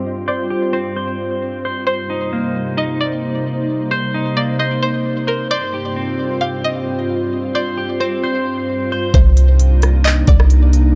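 Ethereal and hazy, this atmospheric cloud-rap excerpt in C minor moves at 132 BPM with a half-time feel, as a glassy FM pad holds sustained chords under a dark, scooped clean electric guitar arpeggio with lush chorus and tape echo and a twangy, warbling resonator pluck melody with phaser, until at 9.1 seconds a boomy 808-style bass and a smooth R&B drum kit with knocking kick, crisp hats, handclaps and rim clicks arrive in a dark, warm digital ambience.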